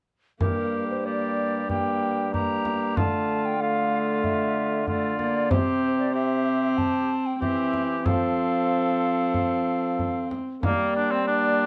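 At 0.4 seconds a full small consort begins together in a solemn, rustic renaissance-style dance in a steady, straight four. A hollow alto recorder with a touch of chiff and vibrato carries the melody, while a mellow cor anglais sings a second line beneath it, soft in attack and set up front. A single bowed viola with a gut-string, slightly reedy period tone fills in the accompaniment, and a brilliant, vintage-sounding trombone holds down the bass. A frame drum played with soft hands in a small-room acoustic keeps the pulse close and present until it drops out at 10.9 seconds, leaving the winds and strings to finish at 11.7 seconds. The harmony moves from G minor through D minor, C and F before returning to G minor, all within a dark production and light reverb, in this short fragment of a longer piece.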